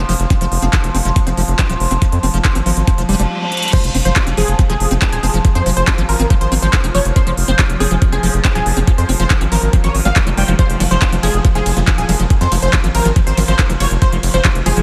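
A straight pulse drives this hypnotic psychedelic trance excerpt, anchored by a knocking, layered electronic kick set up front and a big-room dance kit of crisp hats, ride, crash and handclaps with a tape-warmed, large-room character. Beneath it, a round, deep analog bass built from square and sine tones sits prominently, while a squelchy, resonant acid riff with filter sweeps, chorus and tape echo bubbles in the background. An overtone-sweeping drone holds sustained chords from the start, its slow attack and long release colored by chorus, phaser, built-in reverb and sidechain pumping. A very quiet reverse cymbal rises from 3.1 seconds into the drop at 3.7 seconds, where a faint impact lands and a punchy, detuned supersaw stab takes over the melody with a filter pluck, phaser, tape echo and pumping. A nasal, wobbling formant-filtered bass adds a barely audible second line in two brief passages, and a tiny electronic zap flickers later on. 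The whole mix sits in light digital ambience, dark at the bottom and driving throughout.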